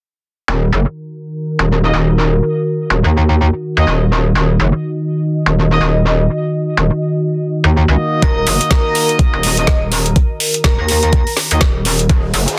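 This swaggering, aggressive bass house excerpt moves at 124 BPM in 4/4 with a 58% swing on the sixteenths, sitting in Eb minor on a single Ebm chord. A metallic, distorted wobble bass drives it from 0.5 seconds, FM-toned and up front with chorus, overdrive and sidechain pumping, while a sweeping resonant pad of detuned sawtooth and sine layers holds sustained chords underneath, its filter sweep evolving across the whole passage. A clear, punchy horn section adds pop-style stabs with a smooth top, softened by a low-pass filter and tape echo. At 8.2 seconds the drums arrive together with an airy, dreamy lead: a knocking, overdriven electronic kick and a garage kit with a woody snare and metallic hats, while the lead carries a soft-attack melody with vibrato, phaser and chorus. A short electronic riser closes the cut at 12.2 seconds, all within light reverb and a dense, heavily limited modern master.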